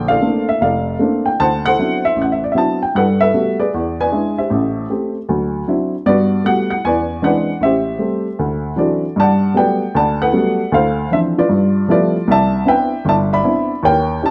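A dark, woody upright piano carries this relaxed, swinging solo jazz passage on its own, sitting up front in the mix with a slightly detuned character and short sustain. The playing spans from deep bass notes to the upper middle of the keyboard, in an easy 4/4 swing. The harmony moves through rich extended chords such as major ninths, thirteenths and altered dominants, settling repeatedly on a Gmaj9 before turning toward Dm9, G13 and Cmaj9 in the second section from 9.2 seconds. A moderate large-studio reverb gives the instrument a sense of space around its mellow tone. The clip runs about 14.3 seconds and is cut from a longer piece.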